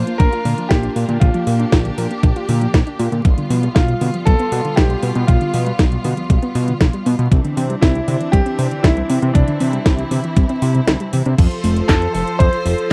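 An overdriven, thumpy electronic kick sits up front in this nostalgic, melodramatic italo disco excerpt at 118 BPM, dropping out briefly at 10.9 seconds, while a house kit of cracking snare, metallic hi-hats, handclaps, congas and crash cymbal plays alongside it. A fat, detuned sawtooth bass drives beneath a soft, round pluck whose dark, chorused arpeggios with tape echo stay in the background, and a lush, bowed string section holds smooth sustained chords over a Bb, G7/B, Cadd9 progression that moves to F at 11.4 seconds. On top, a vintage grand piano with deep bass and tape echo carries the melody, all in a dry, close 1970s-style studio sound flecked with vinyl crackle.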